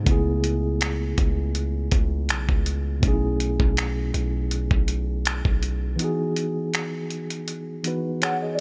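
A digital ambience surrounds this moody, late-night contemporary R&B excerpt at 81 BPM with a light 16th-note swing, where a mellow tine electric piano outlines B13sus4 moving to Emaj9, a deep sine 808-style bass sustains until 6.0 seconds, a dusty sampler-style kit of finger snaps, hi-hat and thumpy kick carries 12-bit grit (the kick dropping out at 6.0 seconds), and a hollow, woody clarinet-like synth lead with chorus and phaser slips in at 8.2 seconds.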